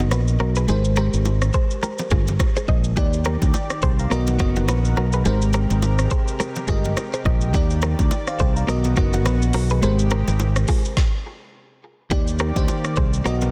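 Afrobeats at 105 BPM in Eb major, sunny and romantic, with a lilting swing on the sixteenths in this short cut from a longer piece. An electronic afro-pop drum kit sits up front with a deep kick, woody snare, metallic hats, rim clicks and shaker, while a bright, punchy fingered electric bass carries the low end just as prominently. A sparkling, bell-like FM electric piano plays the accompaniment through chorus and phaser, and a clean, direct-recorded electric guitar picks a compressed riff with delay. Hand-struck bongos and congas, close and dry, sit in the background, and from 3.0 seconds a lush, airy unison pad adds thick sustained chords with chorus. The harmony cycles through Bmaj7, Abmaj9 and Ebmaj7, the band drops out in a stop from 11.0 to 12.1 seconds, and the dense, heavily limited mix stays dry throughout.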